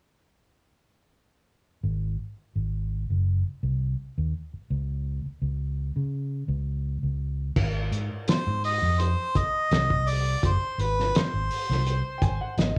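A lightly reverberant studio sound frames this laid-back, soulful excerpt of straight-eighth soul blues, cut from a longer piece and set at 84 BPM in 4/4 with a faint 53% swing on the sixteenths, in A-flat mixolydian tuned to A4 = 439 Hz. A dark, round, amped fingered electric bass opens alone and up front, playing over an Ab7 chord before the harmony drops out entirely. At 7.6 seconds a cloth-damped, thuddy drum kit arrives as the music settles onto Ab, its muffled, gritty small-room tone marked by a fat snare, tight kick, dark cymbals and a rolled-off top. A warm harmonica enters at 8.3 seconds as the solo melody, punchy with a light vibrato and a plate reverb. At 12.2 seconds a woody, warm upright piano slips in quietly as a second line, coloured by slapback echo and plate reverb.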